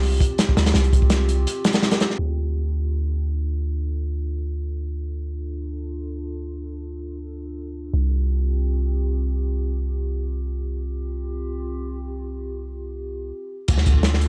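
Dark and atmospheric, this drum and bass excerpt in free time opens with a crunchy, saturated breakbeat kit, up front with a tight kick and dark cymbals, which drops out at 2.2 seconds and returns briefly at 13.7 seconds. Beneath it, a deep, mellow sine-like 808-style bass holds long sustained low notes throughout, while a warbling, nostalgic pad, detuned and lo-fi with chorus, reverb and 12-bit sampler grit, drifts through sustained chords moving between Csus4 and Dm. The whole piece has a dark, low-passed studio ambience.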